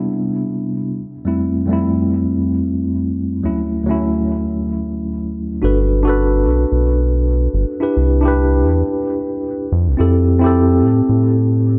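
A worn, slightly out-of-tune tine electric piano opens this relaxed, blissful sunset chillout piece in G major, laying down lush major-ninth chords with a tape echo at an easy 110 BPM with a gentle sixteenth-note swing. At 5.6 s a deep, round analog bass with a ring-modulated, evolving sawtooth-and-sine tone joins up front, sustaining under the chords. A long plate reverb and a dark, warm production soften the whole passage, which is cut from a longer piece.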